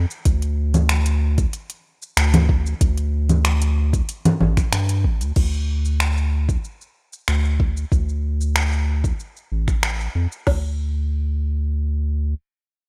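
A straight 4/4 groove at 94 BPM drives this short organic downtempo fragment, cut from a longer piece, with a mystical, hypnotic mood. Two up-front electronic drum kits carry the beat, both given overdrive and studio reverb: one brings congas, finger snaps, shaker, smooth hi-hat and crash cymbal, while the other supplies a soft kick, woody snare and its own crash. A round analog bass, deep and dark with a nasal, sine-like tone, fast attack and sustained notes, sits forward in the mix between A1 and G2 and breathes with sidechain pumping. The drums drop out just past 10 seconds, leaving the bass alone until it stops at 12.3 s as the final section plays out. Light reverb and digital ambience frame a rough home demo mix.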